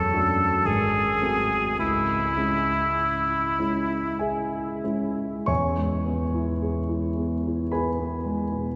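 In a rubato triple metre, this elegiac, melancholic romantic duo, cut from a longer piece, sets a close-miked oboe with light vibrato singing the solo melody up front until 4.2 s against an intimate, vintage-toned grand piano whose deep bass and audible action noise carry the accompaniment on alone through a new section at 5.5 s to 8.8 s, all heard from further back in a cathedral's long, wet reverb.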